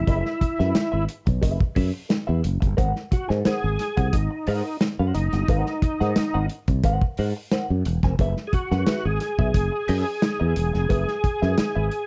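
Funk at 89 BPM in 4/4 with a straight, playful feel, this short excerpt cut from a longer piece moves from Gb9sus4 to Ab9 at 2.8 seconds and back at 8.2 seconds. An overdriven tonewheel organ carries the melody up front with a thick, gritty tone, chorus vibrato and a slow rotary speaker, while a growly, punchy fretless electric bass sustains beneath it and a clean, twangy electric guitar adds compressed, picked accompaniment through a wah. A muffled, lo-fi soul drum kit with a tight kick, medium-tuned snare and hi-hat sits dry and saturated in a dark production with light reverb.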